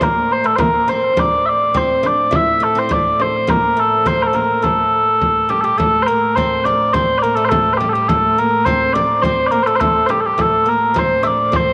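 Mellow, sweet small bagpipes carry the melody up front in this driving, ancient-sounding medieval dance, their continuous tone touched by tape echo. Beneath them an oud plays a second line, its bright, woody double strings plucked with a plectrum. A rich viola da gamba holds a low drone on A from a distance, its bowed gut-string tone reedy and ringing with light vibrato. A large, deep frame drum keeps the straight two-beat pulse, heard in a small room. All four parts play throughout this short cut from a longer piece, which moves from its opening section into a second one at 5.8 seconds, and a wet plate reverb gives the whole a spacious sheen.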